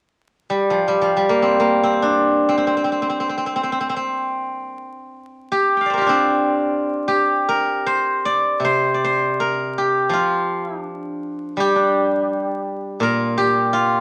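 The recording carries a wet studio reverb and a vinyl crackle. It captures a brief excerpt of Chinese traditional solo plucked-string music, serene and pastoral in mood, unfolding in free time in the C shang mode with tuning at A4 = 442 Hz. A single steel-string zither carries the whole piece, entering at 0.5 seconds and sounding until 14.0 seconds, set up front in the mix. Played with fingerpicks, its acoustic tone is bright and silvery, its notes ringing across a range from Bb2 to G5. The music moves through two sections, with the second beginning at 7.1 seconds.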